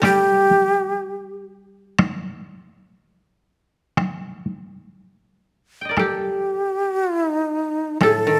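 Japanese traditional chamber music in a calm, austere mood, moving at a rubato 60 BPM in 2/4, heard as a short cut from a longer piece. A breathy, hollow bamboo shakuhachi carries the melody up front, its end-blown tone showing vibrato, tongued attacks and a chiff, with lifted highs; it sounds at the start, falls away after 1.5 seconds and returns at 6.0 seconds. Two dry, woody koto parts are played with fingerpicks: a mellow one traces a second line in the upper register and comes back at 5.8 seconds, while a lower one gives accompaniment in the opening seconds and reappears near the end. A taiko ensemble struck with heavy sticks sits close and up front, sounding through nearly the whole passage. The recording has close, detailed microphones and a moderate recital-hall reverb.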